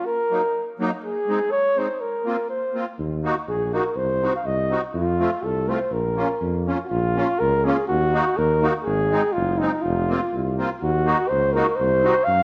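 Alpine folk for a dance band, festive and bouncy in a straight two-beat metre, this clip from a longer piece opens with a dark, smooth-topped flugelhorn carrying the melody in a classical style, backed by a reedy, shimmering musette accordion. A warm tuba with vibrato joins on the bass line at 3.0 seconds, sounding roomy against the other parts. The same section plays twice in a moderate recital hall reverb, giving the whole a dusky, mellow production.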